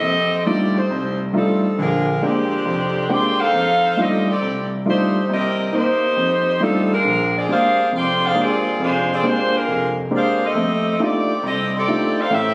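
A saxophone section carries the melody up front through this energetic, brassy swing-jazz passage, its light vibrato, soft attack and smooth top giving the ensemble a polished sheen. An intimate, warm concert grand piano plays accompaniment beside it, with deep bass, a vintage character and audible action noise, moving through rich extended chords for the full 12.5 seconds. Captured on a phone in the room, the music sits in a wet recital-hall reverb and is clearly cut from a longer piece.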